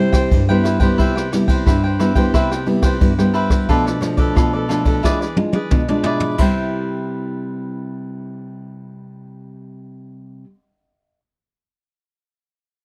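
Lively and sunny, this brief cut from a longer samba and choro piece moves at 89 BPM in C major, with a clear, smooth-topped clarinet sounding a short classical-style phrase that ends at 0.7 seconds. An up-front nylon-string guitar carries the accompaniment in a warm, fingerpicked classical manner with audible finger squeak, joined by a crisp, picked cavaquinho, while a natural-sounding brush kit with dark cymbals and a boomy kick plays a fill from 5.0 seconds and drops out at 6.5. The dry, close 1970s-style studio sound moves through Cmaj7, Bm7b5 and E7b9 before returning to Cmaj7.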